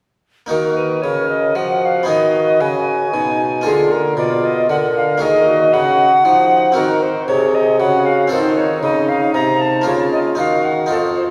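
A baroque-style classical sonata movement with continuo in Eb minor, this introspective, solemn excerpt moves at 116 BPM in 3/4, with a pure, mellow alto recorder singing the melody up front with vibrato and a soft attack while an airy baroque flute traces a straight-toned, tongued second line beneath it. A bright, plucked harpsichord with a single set of strings supplies the accompaniment and a mellow bassoon with light vibrato carries the bass, all four parts sounding together from 0.5 s to about 11.3 s. The ensemble sits in a reverberant church or concert hall with a 2.6-second decay, and the harmony travels from Eb minor through Ab minor, Bb and F7 before returning home.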